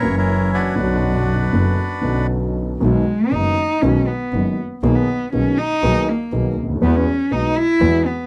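This sultry, tense tango fragment in B major moves at 120 BPM with a loose rubato feel, opening with a reedy, dry bandoneon melody over a bowed cello second line, a mellow, boxy grand piano and a rich, bowed double bass with smooth vibrato. The bandoneon stops at 2.3 seconds, and from 2.8 seconds the cello takes a solo, expressive and up front with soft attacks and portamento, while piano and bass continue until 8.0 seconds. Light reverb colours a dark, warm production.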